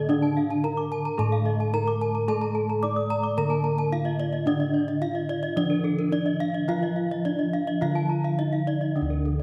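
A straight 4/4 pulse at 110 BPM carries this brilliant, shimmering gamelan excerpt in D pelog, where a mellow, soft bronze metallophone played with padded mallets sings the melody with a slapback echo, a second metallophone struck with a wooden mallet holds the low accompaniment, two bright horn-mallet metallophones ring out arpeggios high above with the shimmering beats of paired tuning, and round, up-front bossed gongs with a boxy small-room character anchor the bass, all set in a moderate concert hall reverb.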